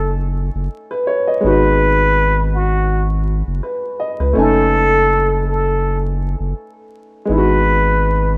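This hip hop excerpt is melancholic and reflective, with a lightly swung sixteenth-note feel. A trumpet with a plunger mute carries the solo melody up front in a jazz style, its breathy, muted tone shaped by wah-wah, light vibrato and scooped notes. Beneath it, an upright piano with a woody, smooth, vintage character plays the accompaniment, while a saturated sub bass sits up front, deep and thick, with a fast attack and a sustained, sine-like body. The harmony moves between F#m69 and G#m7, and the three parts sound together from 0.0 seconds until the trumpet stops at 8.3 seconds. Light reverb and small room ambience give it the feel of a rough home demo, and vinyl crackle adds a worn texture.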